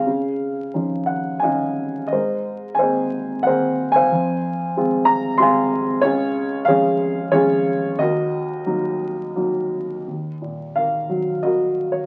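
A dark, mellow baby grand piano plays alone and up front in this cool, bittersweet fragment of a lyrical classical solo piece, moving in a rubato 3/4 across Db2 to C6 with short, natural sustain through chords from Dbadd9 and Abadd9 to Fm, Db and Ebm, before shifting into a new section at 10.1 seconds, all framed by moderate studio reverb and the crackle of a very old 78 rpm record.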